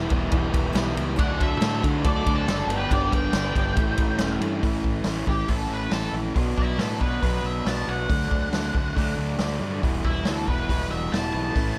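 A dark, fuzzed-out lead guitar with wah, distortion and analog delay carries the melody from 1.2 seconds and takes a solo from 4.6 seconds in this gritty, swaggering classic rock excerpt at 139 BPM in E dorian, briefly joined by a second fuzz line in the background. Beneath it, a raw lo-fi garage guitar and a crunchy overdriven guitar drive the riff alongside a growling, bright overdriven bass and an up-front vintage drum kit with a punchy kick, medium-tuned snare and rolled-off top. A bright picked acoustic guitar and a smooth tonewheel organ with key click and slow rotary add very quiet colour in the opening, with the organ returning briefly at the close, all in a small room ambience.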